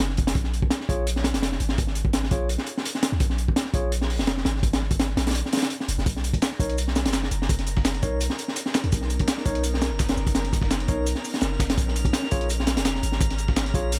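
Opening on a crunchy, saturated breakbeat kit with a punchy kick and high-tuned snare over a deep, decaying 808-style bass, this frenetic, atmospheric drum and bass cut at 168 BPM in Bb phrygian adds clean tine electric piano stabs roughened by 12-bit sampler grit and dub echo from 0.9 seconds. A compressed, dusty soul sampler-style kit with hi-hat and shaker follows behind it from 6.1 seconds, then a glassy, chorused harmonics texture with drifting overtones from 6.4 seconds and a blurred, granular cloud pad from 7.7 seconds, over chords moving from Bb7(no3) to Bmaj9 and Bbm7 in a studio reverb.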